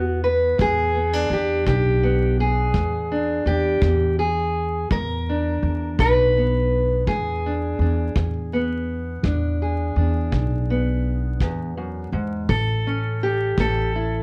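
Worn, warbling old cassette tape with vinyl crackle, pitch drift and light reverb frames this gritty, soulful fragment of acoustic country blues in 12/8, where a dark, boxy fingerpicked parlour guitar carries the melody up front over a woody, growly pizzicato upright bass, a tight brushed kick drum enters at 0.6 seconds, and the harmony holds on E7 before moving to A7 at 12.5 seconds.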